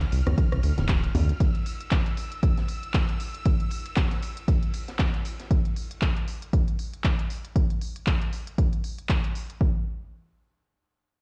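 Deep house at 117 BPM in D minor, with a deep, hypnotic mood and a light 16th-note swing, cut from a longer piece. A round, mellow analog bass sits up front on a Dm7 chord, then drops away at 1.3 seconds as the harmony falls silent, while ringing congas sound briefly in the background over the same opening stretch. Handclaps, smooth hi-hats and rim clicks from a layered deep house kit with gritty 12-bit sampler colour run from the start, and a punchy electronic kick joins them at 0.4 seconds and carries on until 9.7 seconds. Quietly underneath, an airy acoustic kit adds ride cymbal and a high-tuned snare, its cymbals pumping with sidechain, while a silky, nasal string pad with ensemble chorus and vibrato hovers high in the background until 5.5 seconds. The whole thing sounds as if played on a big system in a bare room and caught on cassette, with stone-room reverb giving it a cavernous air.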